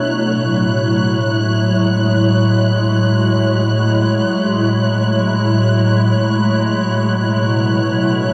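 Drenched in a huge ambient reverb and the warbling pitch drift of worn cassette tape, this brief ambient fragment in F# minor drifts in free time with a reflective, serene mood. An up-front, glassy FM pad with ensemble chorus and a slow attack sustains chords from F#m7/A at 0.3 s to Bm11 at 7.2 s, while a soft, round, barely audible pluck plays arpeggios only until 0.6 s. Quietly beneath, a close, expressive studio violin section adds a high texture at F#6 with vibrato and portamento, haloed in shimmer reverb.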